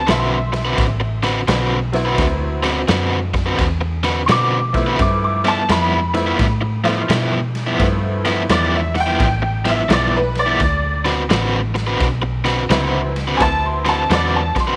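A jangly, detuned honky-tonk upright piano and a round, foam-muted electric bass open this laid-back, gritty electric blues shuffle at 86 BPM in D mixolydian, tuned to A4 = 437 Hz, joined at 0.1 s by an up-front overdriven electric guitar riff with tremolo and a raw garage drum kit of punchy kick, ride cymbal and medium-tuned snare with a saturated, rolled-off top, set in small-room ambience as the chords move from D13 to G13 at 5.0 s and back at 10.6 s in this excerpt cut from a longer piece.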